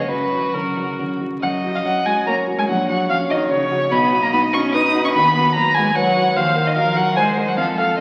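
In a quick, rubato 3/4 at 146 BPM, this restless, dramatic classical-period excerpt for piano quartet in F# major sets an up-front, smooth violin melody with vibrato over a focused second violin line, a close, expressive cello line with portamento and soft attacks, and mellow, intimate grand piano accompaniment with audible action noise, all heard through a recital hall's reverb and the crackle of a very old 78 rpm record, its harmony moving from F# through B to a closing Cm7b5/Eb at 6.4 seconds.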